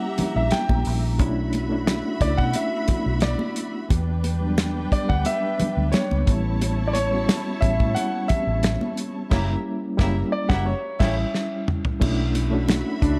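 A straight, unhurried 4/4 groove sets this lush 1970s-style soul passage in motion, cut from a longer piece and carrying a cinematic, silky mood. A damped drum kit with a tight kick, medium-tuned snare and dark cymbals sits up front beside a round, foam-muted fingered electric bass, while very quiet, high-tuned congas add a bright, thin-skinned touch from a live room. A clear concert grand piano carries the melody over a reedy electric piano with a fast tremolo, and a smooth-topped studio string section adds a lush, bowed second line with vibrato. From 9.3 seconds a distant horn section joins with pop-style stabs during a band accent, and a drum fill arrives at 11.3 seconds before the opening phrase returns. Rich extended chords such as F#7b9, Bm11 and Em9 color the harmony, and the whole production has a dark, warm character with light reverb and a small-room ambience.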